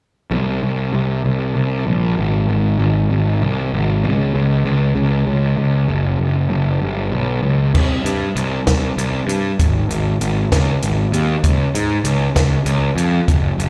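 This short cut from a longer piece sounds like a live gig heard through the venue's PA, carrying the reverb of a recital hall. It is indie rock in 6/8 at 65 BPM counted in dotted quarters, with a straight feel and tuning set to A4 = 439 Hz, and its mood is wistful yet upbeat. A picked electric bass opens alone at 0.3 seconds, sitting up front with a bright, growly fuzz tone from direct, amped overdrive, ranging from Gb1 to Ab2. At 7.7 seconds a compact cocktail drum kit joins for the second section, dry and natural, with a punchy kick, a high-tuned snare, hi-hat and dark crash cymbals, also placed up front. Both parts carry on together until the cut ends at 13.7 seconds.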